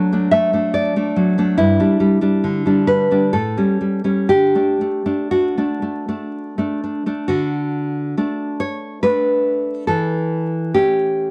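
Tender and sunny, this romantic piece for solo classical guitar is a brief passage cut from a longer work, moving in an unhurried 3/4 at roughly 58-73 BPM with a flexible, rubato feel. A single fingerpicked nylon-string guitar carries everything, ranging from G2 up to E5 in D major, tuned slightly low to A4 = 438 Hz. Its tone is warm and deep in the classical manner, with the bright clarity of fresh strings, and it sits up front in a dry, close small-room sound. The harmony drifts from D/F# through Em7/G and A7 to settle on D, and a second passage from 7.3 s turns back toward A7/E at 9.9 s before the clip ends at 11.3 s. A vinyl crackle gives the 1970s-style studio recording a gently aged character.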